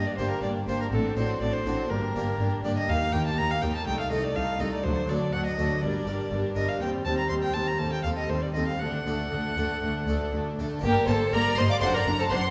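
Dramatic and stormy, this baroque-style concerto movement in G minor drives along at 122 BPM in a straight 4/4, with a solo violin up front carrying the melody in a rich, smooth, lightly vibrated tone over a soft-attacked chamber violin section also playing the melody in the background and a clear, intense symphonic violin section on a second line. A full Italian-style harpsichord and an expressive viola section fill in the accompaniment, while an even cello section and a double bass section, the latter entering at 0.2 seconds, anchor the bass through a minor-key progression built on Gm, D7/A, Eb and diminished chords. The ensemble sits in the wet reverb of a recital hall, and this brief excerpt cuts off shortly after a new section begins around 10.8 seconds.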